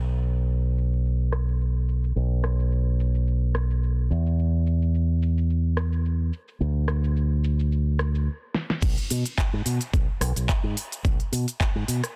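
This excerpt opens on a bright, up-front fingered electric bass run through an envelope filter, pumping against a sidechain in a cosmic, sleek nu-disco groove at 108 BPM in B dorian, with a light 16th-note swing. A moment later a produced, layered pop drum kit joins, its fat snare, crisp hi-hats, rim click, handclaps, cabasa and crash cymbal softened by low-pass filtering and set in a small room with a tape-warm character. Around 8.3 seconds the groove stops briefly, and a drum fill at 8.5 seconds leads into a drop at 8.8 seconds. There a gritty, thumpy electronic kick drum enters up front, compressed and sampler-style, driving the final stretch until it stops at 11.7 seconds. The mix is dry and dense, with a heavily limited modern master.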